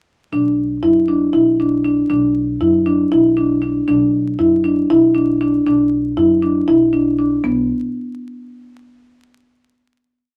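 A mellow, round marimba played with soft mallets sits up front with a padauk-barred ostinato of B minor arpeggios in this urgent yet pensive contemporary chamber piece in 7/8 at 236 BPM (eighths). It plays from 0.3 s to 7.7 s together with a woody pizzicato upright bass on steel strings sounding root and fifth on the main beats, all wrapped in wet studio reverb and vinyl crackle before a final note rings out from 7.4 s.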